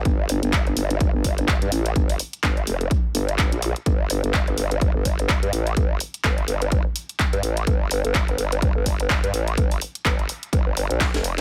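A vowel-sweep wobble bass, nasal and resonant with overdrive, chorus and sidechain pumping, opens this bouncy, swaggering bass house cut in G minor at 126 BPM with a 58% swing on the 16ths, joined at 0.1 seconds by a punchy, overdriven kick and a house kit of handclaps, hi-hat and cracking snare, all up front in a dry mix, as a filter sweep runs across the bass throughout and a drum fill arrives at 11.0 seconds.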